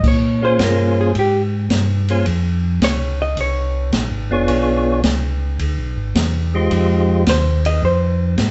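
Soul jazz organ trio with a late-night, soulful swing, cut from a longer piece: a mellow, round tonewheel organ carries the bass line and a percussive tonewheel organ with third-harmonic percussion sings the melody from 0.4 to 7.2 seconds, both up front through a slow rotary speaker, while a dark, compressed hollow-body guitar picks clean accompaniment that drops out at 3.9 seconds and returns at 7.3, all over an open acoustic kit with dark cymbals, a high-tuned snare and a boomy kick in a moderate studio room.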